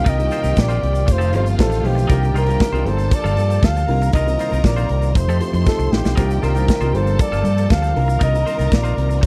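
Sultry and glamorous, this disco excerpt sets a breathy, dark flugelhorn melody with light vibrato and scooped notes over a clear, bowed string section, while a mellow baby grand piano, a bright, clean semi-hollow guitar with spring reverb, and a very quiet tonewheel organ turning through a slow rotary speaker fill in the harmony behind it. An overdriven, punchy fingered bass and an up-front acoustic drum kit with a tight kick and medium-tuned snare drive the groove, joined by a grainy, distant egg shaker, with a drum fill at 5.7 seconds. The dry, close 1970s-style studio sound moves through Cm11, F9 and Gm9 chords.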